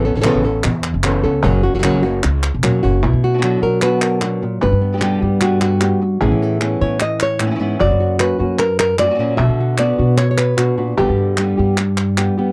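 A dry, close recording with a 1970s studio feel carries this fiery, dramatic flamenco excerpt, led by a fingerpicked acoustic guitar placed up front that plays the melody over a thumpy, gut-string pizzicato upright bass and crisp palmas hand claps. A soft-handed, woody cajon with faint snares sits distant in the background and plays a fill before dropping out at 2.9 seconds. From 3.0 seconds a second, darker fingerpicked flamenco guitar adds stabs as the harmony cycles through Bm, G, Aadd9 and F#.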